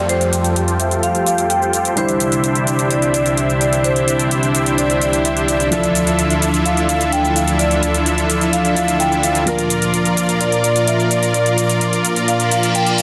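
A straight 4/4 pulse at 128 BPM comes from electronic hi-hat and shaker with metallic hats, entering at 0.1 s in this uplifting, euphoric stretch of festival progressive house cut from a longer piece. Up front sits a huge, thick supersaw riff, detuned and compressed with a sub octave and vibrato, run through a low-pass filter that sweeps across the whole passage, plus delay. A marimba played with medium mallets carries the melody between Bb4 and G5, roughened by vintage 12-bit sampler grit and echoed with delay. Beneath it, a lush, warbling unison pad with a slow attack and long release holds sustained chords under chorus and its own filter sweep, while a worn baby grand piano adds very quiet accompaniment with long sustain. The harmony moves from Fadd9 through Cadd9 and Dmadd9 to Bb, a downlifter sweeps in the background at the start, and a reverse cymbal rises at 12.5 s, all set in a moderate hall reverb within a dense, heavily limited modern master.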